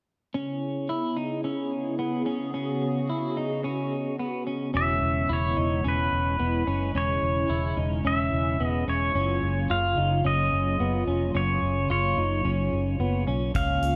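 This dream pop excerpt drifts at 109 BPM in a straight 4/4, with a floating, ethereal mood. A hollow, flute-like pad with a soft attack and warbling ensemble chorus sustains mellow chords, while a clean, compressed electric guitar plays arpeggios through subtle chorus and tape echo. The harmony rests on E6 before moving to F#maj7. Around 4.7 seconds a dark, round, foam-muted vintage bass enters up front, and a pedal steel guitar picked with fingerpicks takes the melody with slide and volume swells. A soft-mallet drum kit with a boomy kick and hi-hat appears only at 13.5 seconds, and a moderate plate reverb in a small room gives the whole a gentle, airy space.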